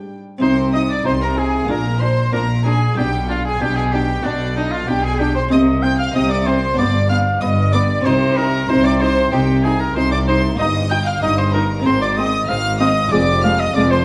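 A stormy, driving baroque-style concerto movement opens with gut-strung, period-style string sections played with light vibrato: a close first-violin melody, a smooth-topped second violin line and a dark, nasal viola part behind it, and a rich cello bass, alongside a muted, lute-like buff-stop harpsichord sitting dry and airy in the background. At 0.4 seconds a roomy solo oboe steps up front on the melody and a reedy double bass section adds a deeper bass line. A wet recital hall reverb surrounds the ensemble, and the passage is cut from a longer piece.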